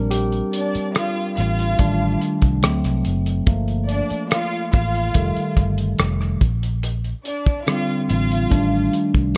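A barky tine electric piano takes the lead from the first beat, lightly overdriven through a combo amp and colored by phaser, carrying a solo across the whole 9.4-second stretch of this lush 1970s-style soul excerpt. Set at a relaxed 72 BPM in straight 4/4 and tuned to A4 = 435 Hz, the music feels cinematic and silky, moving through rich chords such as Bb69, F13/A, D7 and Gm9. Underneath, a vintage muted fingered electric bass sits up front with a dark, round, punchy, foam-muted tone, while a cloth-damped, thuddy drum kit keeps time on hi-hat, tight kick and rim click with a rolled-off top. A close studio violin section enters at 0.5 seconds as a second line, bowed smooth and even with vibrato. The production is dark and intimate, placed in a small room that gives the parts a snug, vintage glow.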